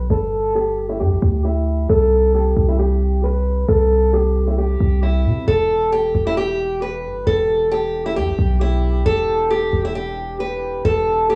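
This melancholic, brooding trap excerpt has the boxy character of a home cassette recording, with a small room's light reverb around it. An old ladder-braced acoustic guitar carries the melody up front, picked in a narrow upper register with audible finger squeaks, and its tone is dulled by a low-pass filter, cassette coloring and an analog delay. For the first 5.5 seconds a filter sweep moves across the guitar while the harmony shifts from G5 to C5. A deep, boomy 808-style bass sits just as close, with a fast attack, a mellow decay and a noise layer under its sine tone, all in a half-time feel. At 5.5 seconds, as the chord settles on Em7, a dark French horn section enters in the background, playing distant, roomy sustained chords with light vibrato in a classical ensemble style.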